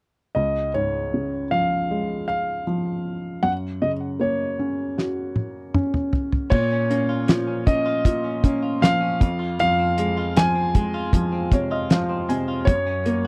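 This hopeful, tender pop ballad moves at an unhurried 78 BPM in Db major, with a polished concert grand piano carrying the melody, its long sustain and audible action noise up front, over a soft, felt-muted upright piano accompaniment with short, mellow notes that adds its own fill near the end. A dark, damped 70s drum kit with a fat snare and tight kick arrives with a fill at 5.0 seconds, and a clean, compressed electric guitar joins at 6.5 seconds with picked arpeggios bathed in lush chorus as the harmony shifts toward minor chords. The sound is dry, close and intimate, in the manner of a 1970s studio, and this is a short section cut from a longer piece.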